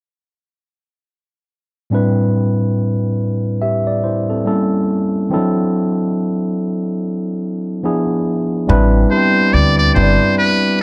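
R&B at a slow 71 BPM with a swung sixteenth feel in A minor, this introspective, soulful excerpt opens at 1.9 seconds with a barky, lightly overdriven tine electric piano, played up front through a combo amp with plate reverb, moving through Am11, A7b9, D9 and E7b9 chords. A woody, thumpy pizzicato upright bass with gut strings joins at 8.7 seconds, and at 9.1 seconds a buzzy, brilliant trumpet with a metal mute takes a forceful jazz-style solo with light vibrato, sounding thin and distant despite sitting up front. The whole is set in a moderate studio room, cut from a longer piece.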